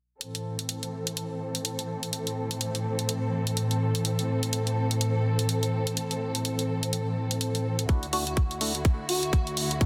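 A dense, heavily limited mix sits in a lush hall reverb, opening this aggressive, bouncy bass house excerpt in A minor at 125 BPM with a 16th-note swing. From the start, a dark, woody studio string section sustains an Am chord through a low-pass filter sweep and sidechain pumping, while an up-front electronic hi-hat ticks along. At 7.9 seconds the harmony moves to Dadd9 as a tight, layered kick drum lands with hollow, wave-folded organ stabs carrying chorus, phaser and dub echo, and at 8.1 seconds an airy, detuned lead adds a soft, dreamy sustained F#4 with vibrato and echo.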